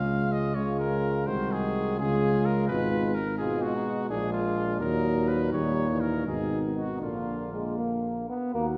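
A warm trumpet with vibrato and a soft attack carries the melody in this solemn, grave classical brass quintet excerpt, unfolding in a rubato 6/8 at about 78-85 BPM counted in dotted quarters. A close-miked flugelhorn with light vibrato sings a second line, while a clear French horn and a distant, roomy trombone accompany from the background and a mellow tuba holds the bass up front. The harmony moves from Db through Ab7/C, Bb7 and Ebm to Abm and a closing Bb, set in the wet reverb of a church or concert hall.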